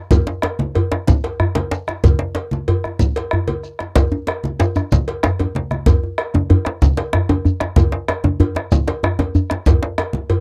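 A dry, close 1970s-style studio sound with light reverb frames this driving, festive West African drum ensemble excerpt at 126 BPM in 12/8, where a round bombo, bright, thin-skinned congas and a deep djembe sit up front, a second medium-tuned djembe and a grainy, mellow shekere stay in the background, a metallic cowbell adds its tone, and a drum fill arrives at 5.4 seconds.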